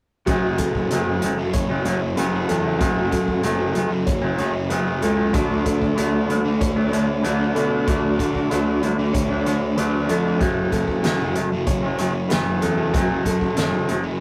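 A loose indie drum kit plays a straight 4/4 pulse, its fat snare, punchy kick and hi-hat breathing in a pumping room sound. This short, hazy and dreamy shoegaze and dream pop fragment is cut from a longer piece. A round, fuzzed-out picked bass sits low and dark beneath two guitar riffs: one overdriven and up front with a warm tone, the other thick, dark and distorted. Above them, a direct-recorded clean electric guitar plays compressed, scooped arpeggios in a higher register. The harmony moves from F#m to Dmaj7 at 5.3 seconds and returns to F#m at 10.4 seconds, while a wet small-room reverb and rough rehearsal-room saturation blur the parts into a dense, drowsy haze.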